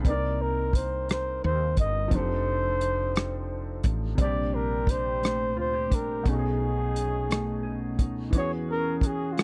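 A worn, long-sustaining grand piano, a round, hollow-bodied fretless bass with analog chorus and a dark soul drum kit of hi-hat, punchy kick and rim click open this sultry, late-night slow R&B excerpt in 6/8 at 58 BPM, where a breathy, whispered flugelhorn carries the intimate, scooped jazz melody with light vibrato from 0.1 seconds over Cm7, F13, Bbmaj13, B13 and E69, and a clean, fingered, compressed electric guitar adds a mellow second line from 4.2 seconds, all in a dry, close 1970s-style studio sound.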